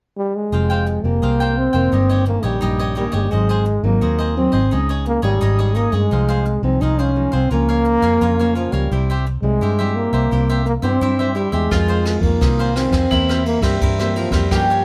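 Lightly reverberant, this lively, nostalgic samba-choro excerpt puts a close-miked warm trombone up front, singing a vibrato-laden jazz-style solo over a bright, crisp picked cavaquinho and a fingerpicked nylon-string guitar that sits in the background with fresh strings and audible finger squeak. A round, foam-muted vintage electric bass anchors the low end with a dark, amped tone. At 11.7 seconds a picked mandolin with doubled strings adds a second line, joined by a distant, roomy brush kit with a boomy kick, rim clicks and dark ride cymbals.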